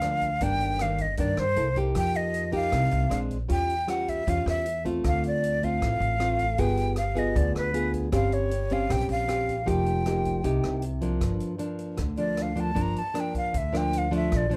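Bossa nova with a melancholic, intimate mood, heard in a short cut from a longer piece set in a straight 4/4 feel. A breathy jazz flute carries the melody up front, its tone soft in attack with vibrato, lifted highs and a slightly unsteady quality, and from 11.2 seconds it takes a solo. A dark, fingerpicked nylon-string guitar, also up front, supplies classical-style accompaniment where finger squeaks can be heard, moving through harmonies such as Ebmaj7/G, F9sus4, A7b13/E and G7b9 before settling on Gm7. Underneath, a woody pizzicato upright bass holds the low end while a drum kit recorded in a natural studio room keeps time on hi-hat, rim click and a punchy kick drum, sitting lower than the other parts. Light reverb gives the whole ensemble a gentle sense of space.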